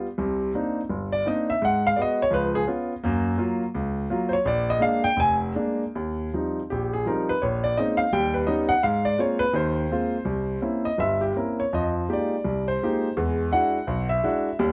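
Solo jazz piano in Eb major swings at 168 BPM with a loose, rubato feel. A single grand piano carries the whole 14.7-second excerpt, sounding intimate and up front, with audible action noise, long sustain, light reverb and close, detailed miking. Rich extended harmonies such as Cm9, Gbmaj7, Ebaug7 and C7b9 color two statements of the same section, the second beginning at 6.0 seconds and closing on E9.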